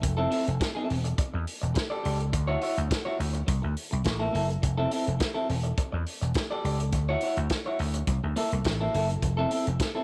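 A straight 4/4 groove at 104 BPM drives this danceable, glamorous disco passage, cut from a longer piece, with a vintage drum kit's punchy kick, medium-tuned snare and hi-hat sounding natural and up front in a small room. A vintage slap bass adds an amped, punchy low end, while a picked, compressed electric guitar at the edge of break-up, slightly gritty and bathed in spring reverb, plays accompaniment. The chords cycle through Fmaj7, Em7, Dmaj9 and C13 twice before landing back on Fmaj7 at 9.2 seconds, all under a light reverb.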